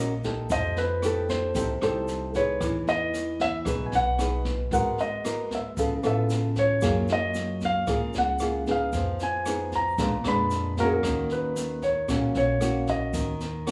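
Light reverb and the ambience of a small room frame this intimate, smooth bossa nova excerpt, captured as a band playing live together at 114 BPM in 4/4 with a straight feel, in E-flat minor. Up front, a concert grand piano carries the melody with a warm, short-sustained tone and a deep low end, while a classical nylon-string guitar, thumb-plucked and close, supplies the accompaniment. Beneath them, a pizzicato upright bass on steel strings sounds woody and growly. From 0.2 s, a jazz kit played with brushes adds a boomy kick, rim clicks and a medium-tuned snare with a rolled-off top, joined by a grainy, bright, vintage-sounding egg shaker that sits in the background. The harmony moves through lush jazz changes such as Ebm7, F9, Abm9, Db7alt and Gbmaj9, then turns through Fm7b5 and Bb7b9 and arrives back on Ebm7 at 11.0 s.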